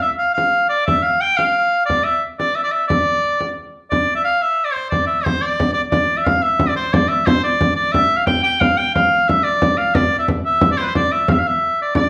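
A bright shawm with light vibrato and a deep, close, dry frame drum played with soft hands both sound from 0.0 seconds in this mysterious, ancient-feeling medieval dance in D minor, moving at 119 dotted-quarter beats per minute in a straight 6/8, with the distant, roomy folk-style shawm melody carried by a wet large-studio reverb and a new section opening at 3.9 seconds.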